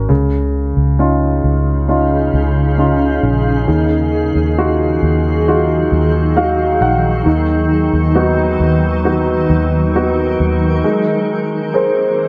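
Pop ballad excerpt in Db major at a slow 67 BPM, emotional and hopeful, with a smooth, vintage-toned grand piano carrying the accompaniment through chords such as Dbadd9, Ebmadd9, Cb/Eb and Abadd9, and adding a short fill at 5.9 s. A round, punchy, foam-muted fingered electric bass sits up front underneath until 10.8 s, while a cloudy, blurred granular pad enters at 1.5 s with a slow attack and long, evolving sustain. The dark production is bathed in a moderate plate reverb.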